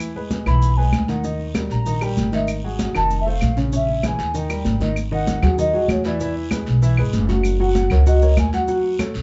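Afro-Cuban jazz with a sophisticated, driving feel: a growly upright bass and a smooth vintage grand piano sit up front beneath a hollow, airy alto ocarina melody entering at 0.5 s with a crisp chiff, while bright congas, woody claves, a raspy guiro and grainy maracas fill a small, reverberant room heard from further back.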